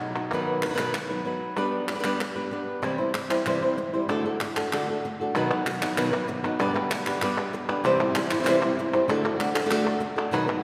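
A brisk straight 4/4 pulse at 192 BPM drives this intense, fiery flamenco cut from a longer piece, with crisp, close palmas hand claps sitting up front from 0.2 seconds. A bright, fingerpicked flamenco guitar with fresh strings carries the melody throughout, while a second, darker and woody guitar with old strings plays chord stabs in the background, briefly at the start and then again from 2.8 seconds. The chords cycle through B, G, C and D twice, and a long church reverb gives the performance a resonant, hall-like space.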